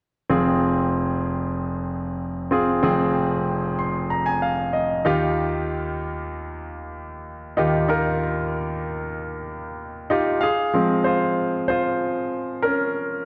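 A clear concert grand piano opens this dramatic, driving pop piece in F minor at 95 BPM, playing alone in a straight 4/4 and ranging from a deep bass up into its upper register. Its polished, up-front sound has a short sustain, set within the wet bloom of a scoring-stage reverb and a dark production, as the harmony moves from Fm to Ebadd9 and back, with a fill at 3.5 seconds. At 10.4 seconds the piano takes a solo passage that carries through to the end of this cut from a longer piece at 13.3 seconds.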